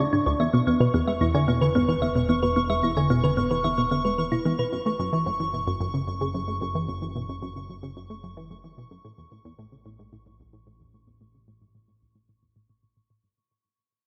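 Bathed in lush hall reverb with a rolled-off top, this cosmic, expansive fragment of sequencer-driven ambient space music moves at 111 BPM in 4/4, where round, tine-like thumb-piano-style synth arpeggios with chorus and delay ring out until 4.7 s over a tight, driving sawtooth sequenced riff, a fat, saturated analog bass, and a pulsing, tempo-synced gated texture high above, while the chords pass from E through F#7(no3) to A, a filter sweep moves across the arpeggiated synth sound, and the whole passage fades out.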